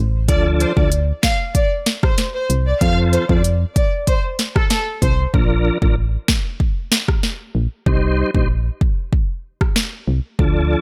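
A punchy, round FM bass opens this bouncy, sunny dancehall excerpt in Bb major at 95 BPM, joined at 0.3 seconds by an electronic drum kit with a deep kick, sharp snare and smooth hats, a clean tonewheel organ through chorus vibrato and a fast rotary speaker, and a lush, distant violin section carrying the melody with delay. The violins stop at 5.1 seconds, and from 5.3 seconds the hi-hats drop out as the chords move from Dm and F to Bb and Cm. The dark, up-front bass and tape-warm drums sit in a digital ambience.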